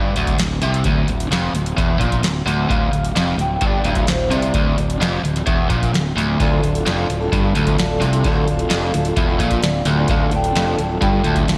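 A lush hall ambience gives this gritty, driving classic rock fragment a big arena sound. Up front, a bright, overdriven, double-tracked electric guitar riff with slapback echo rides over a growly fuzz bass and a booming analog drum machine with a deep kick, tonal snare and metallic hats. A dark, slightly broken-up slide guitar adds a second line from 2.7 s and returns at 10.1 s, while a boxy old ladder-braced acoustic guitar, also touched with slapback echo, joins with picked accompaniment at 6.4 s.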